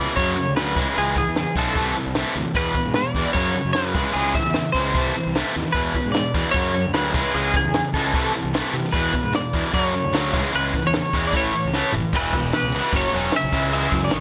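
Carefree yet wistful, this indie rock excerpt in E mixolydian moves at 150 BPM in a straight 4/4, with a twangy, compressed twelve-string electric guitar carrying the melody through tremolo and tape echo over an up-front, bright high-gain distorted guitar riff, a round, fuzzy fingered electric bass, and a dry, compact cocktail drum kit with a punchy kick, high-tuned snare and dark cymbals that enters at 0.2 seconds and plays a fill at 11.7 seconds before a biting overdriven guitar joins in the background at 12.1 seconds with subtle chorus and tape echo, all with little reverb.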